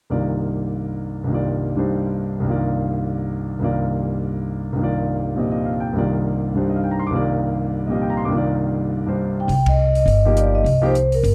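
A deep-toned concert grand piano opens this intense, hypnotic modal jazz fragment alone on a Cm11 chord, until a mellow, ringing soft-mallet vibraphone takes the melody at 9.4 seconds and a woody, thumpy pizzicato upright bass and a dry cocktail drum kit with dark cymbals and a punchy kick join at 9.5 seconds, the band striking an accent at 9.6 seconds within a swinging, lightly reverberant, dark production.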